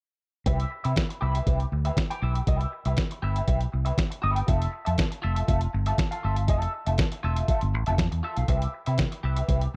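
A straight 4/4 groove drives this glamorous, celebratory disco excerpt, built on a muffled, pitched-down sampler-style drum kit with a thumpy kick, fat snare and hi-hat sitting up front beside a growly, punchy fingered electric bass. A clean, twangy electric guitar, scooped and compressed, plays accompaniment higher up through wah and spring reverb, over chords moving from Cmaj7 to Fmaj7 and back to Cmaj7 at 8.5 seconds. The production is dark and warm, set in a digital ambience.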